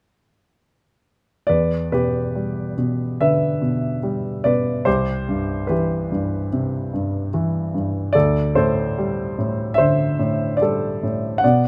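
A smooth, vintage-toned grand piano plays alone from 1.5 to 11.7 seconds, its short sustain sitting up front over a light reverb and spanning C2 to F#5. This melancholic, dark classical fragment moves with rubato at about 73 BPM in 4/4, in E minor. Its lyrical line passes through Em7, Cmaj7 and D7sus4.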